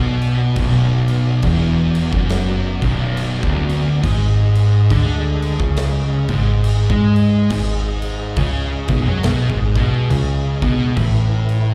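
A live club recording heard through the venue's PA, with a moderate club reverb, captures a brooding, ominous stoner and doom metal fragment at 69 BPM in a swung 4/4, moving from Bm to G#5 and then A5. Two thick fuzz guitars, one dark and one warm, play alongside a double-tracked crunchy overdriven guitar with slapback echo on a heavy low riff, while an up-front overdriven picked bass, foam-muted, round and punchy with tube saturation, anchors the bottom. A big acoustic drum kit with a punchy kick, medium-tuned snare and bright crash enters at 0.2 seconds, and a mellow tonewheel organ sits in the background holding sustained chords, its key click and third-harmonic percussion colored by chorus vibrato and a fast rotary speaker.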